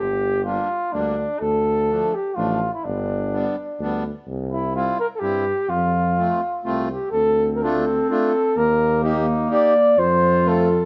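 A jolly, bouncy alpine folk dance tune in swung 3/4 at 126 BPM opens at 0.0 seconds with a mellow flugelhorn carrying the melody, its soft attack and light vibrato set up front, over a clear tuba bass line that also sits forward with a vibrato and smooth top. At 0.5 seconds a reedy, close-miked accordion joins with a full, dry accompaniment in its single-reed, dry tuning. The tune sits in F major, moving through Gm, Dm, G and C before resolving to F, then turns to D minor at 7.1 seconds, where a clarinet enters with a smooth-topped second line in a classical style beneath the flugelhorn. The band plays live in one stone room, giving the horns a moderate, natural reverb. This is a short section cut from a longer piece, closing on Eb and then F.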